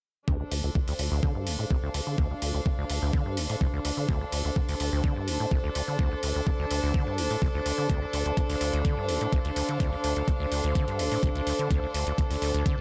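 At 0.3 seconds a thumpy, sampler-style electronic kick, a rubbery acid bass riff and a bowed chamber string ensemble all arrive together, and dry, metallic electronic hi-hats join at 0.5 seconds. This hypnotic, driving acid house clip, cut from a longer piece, sits on a steady, straight 4/4 feel over a single Dm7 chord, tuned to A4 = 437 Hz. The deep sawtooth bass is dark and resonant, with a fast-attack filter pluck that decays, plus saturation, a subtle chorus and sidechain pumping that also breathes through the strings. Those strings add an earthy, smooth-topped texture with light vibrato, placed up front beside the bass and the tape-warm kick, which sounds re-recorded in a small room. The overall sound is gritty hardware with transformer saturation and only a light touch of reverb.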